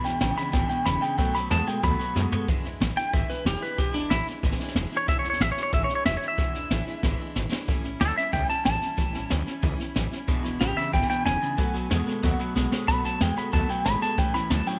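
Rockabilly in an upbeat, rollicking mood, where a twangy, compressed lead electric guitar with subtle chorus and tape echo carries the melody up front over a picked dreadnought acoustic with finger squeak, a woody, thumpy pizzicato upright bass, a brushed drum kit with a high-tuned snare and boomy kick, and a second clean electric guitar whose spring-reverbed riff plays until 2.5 seconds and returns at 10.3 seconds, all set in a small room ambience.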